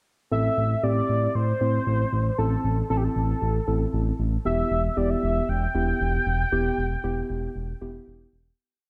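A bold, retro octave-doubled sawtooth lead with chorus, tape echo and vibrato carries a motif-based melody over muted, felt-like synth keys pushing soft triad chords and a smooth, up-front synth bass pulsing in eighth notes, in a cool, nocturnal synth-pop piece at 116 BPM in A minor that moves from Am to Em at 4.5 seconds, sits in a moderate concert hall reverb with a dark production, and fades out from 6.5 seconds.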